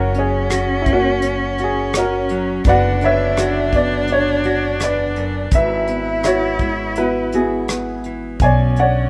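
This intimate, heartbroken acoustic folk-pop ballad, cut from a longer piece, opens with a clear, slightly detuned upright piano carrying the melody up front, a bowed cello singing a second line, a fingerpicked nylon-string guitar and a pizzicato upright bass all sounding together from the start. A soft brush drum kit joins at 0.1 s, playing hi-hat, a tight kick and rim click in a small room, close and present. The tempo sits at a straight 84 BPM in 4/4, in B dorian with tuning at A4 = 441 Hz. The single cello has a rich, focused tone with vibrato and a smooth top, while the guitar is bright and full-bodied with audible finger squeak, and the gut-string bass sounds woody, dark and thumpy. Chords move from F# through Bmadd9/F# and Eadd9/G# to Bmadd9 at 8.4 s, under a light reverb that keeps the small ensemble close and tender.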